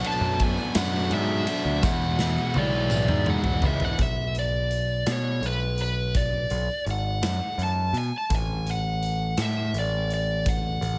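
A dark, smooth overdriven lead guitar with slapback echo sings its melody over a growling, punchy overdriven bass, a big, natural-sounding rock kit with bright cymbals, a bright double-tracked crunchy guitar riff, and faint, mellow string-machine cellos. A jingly tambourine sits in the background of this bittersweet, restless indie rock piece in 6/8, and a drum fill runs from 1.8 s to 4.0 s. At 4.0 s the cellos and crunchy guitar drop away, leaving the lead guitar, bass and drums to carry on in a small room.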